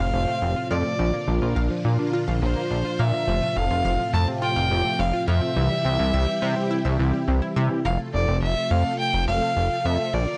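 A dry, gritty cassette-tape sound frames this upbeat, nostalgic pop excerpt in F major at 105 BPM, where a smooth, up-front solo violin with vibrato carries the melody over a glossy, pulse-width-modulated synth bass with tube saturation, shimmering ensemble-chorused string-machine chords, a round, mellow synth brass part with chorus and phaser, and bright, wave-folded analog pluck arpeggios with analog delay that stop at 7.8 seconds as the harmony returns to F.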